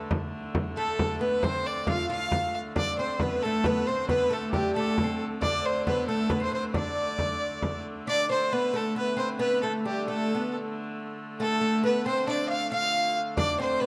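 Medieval dance in 6/8 at 90 BPM in D dorian, driving and mysterious, where a biting, earthy hurdy-gurdy drone underpins an up-front, focused fiddle melody with light vibrato, shadowed by a woody, double-strung oud plucked with a plectrum and a nasal, reedy gut-string fiddle in the background, while a deep, dry frame drum played with soft hands runs until 7.8 seconds and returns briefly at 13.4 seconds, all captured close and detailed with light reverb in this excerpt from a longer piece.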